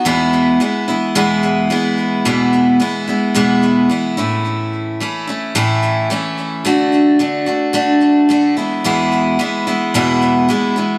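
A light reverb gives this short rock recording a gentle sense of space, with a single picked steel-string acoustic guitar placed up front. The guitar carries the whole piece alone from the start, its bright tone shaped by a touch of digital delay and the character of an auditorium-style instrument. The mood is nostalgic yet hopeful, in a straight, steady feel. The harmony opens on E, moves to A at 4.2 seconds and D at 6.6 seconds, and settles back on E at 8.6 seconds. The guitar ranges from its low E string up into the higher register across the passage, which is cut from a longer piece.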